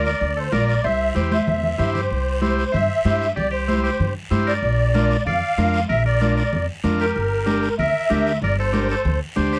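A reedy, shimmering musette accordion carries the melody from the first moment, joined at once by a twangy, clean electric guitar playing a second line, a buzzy, overdriven combo organ in accompaniment and a woody, thumpy pizzicato upright bass set up front. This is a sunny, festive cumbia at 190 BPM in straight 4/4, with congas entering at 0.2 seconds with a thick-skinned, soft-handed, vintage tone and a raspy guiro sitting distant as if in a large room. Harmony moves from Bb to C and back to Bb before settling on Gmadd9. A fill between 1.2 and 2.1 seconds leads from the opening passage into a longer second section. The dark, smooth accordion and the organ stand out against the fainter guitar and guiro. The dry, close sound recalls a 1970s studio, and the passage is cut from a longer piece.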